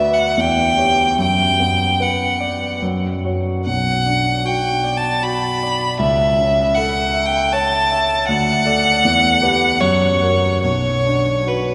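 A rich, smooth violin sings a melancholic, elegiac melody with vibrato up front, over a deep-bassed concert grand piano accompaniment in this romantic classical duo fragment in B minor, moving in a rubato 3/4 at 71-81 BPM under a cathedral reverb with a 4.6 s tail, and arriving on B minor at 10.6 s.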